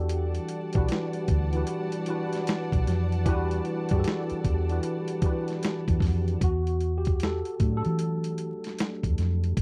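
Swung sixteenths in 4/4 drive this sultry, soulful neo-soul R&B excerpt, where a gritty, compressed sampler-style drum kit with a thumpy kick and a dark, round, foam-muted fingered electric bass sit up front beside a clean tine electric piano with ensemble chorus, while a bowed studio string section adds intimate, smooth-topped sul tasto chords with vibrato until 6.4 seconds, when the electric piano takes a solo as the harmony moves from Em11 to E9sus4, captured in a dry, close 1970s-style recording dusted with vinyl crackle.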